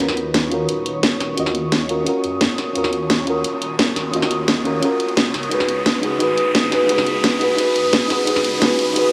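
Liquid drum and bass at 174 BPM in Eb minor, this soulful, dreamy build-up is cut from a longer piece. It moves from Ebm7 to Db9sus4 at 5.5 seconds, with a round, full-bodied FM electric piano up front, treated with chorus and digital delay, over a glassy, warbling FM pad that carries ensemble chorus, built-in reverb and vintage 12-bit sampler grit, while a menacing, saturated detuned saw bass swells beneath through a high-pass filter. A layered electronic garage kit of hi-hat and a cracking snare sits up front, an electronic riser climbs in from 1.7 seconds, and a huge ambient reverb lends the mix a dreamlike depth.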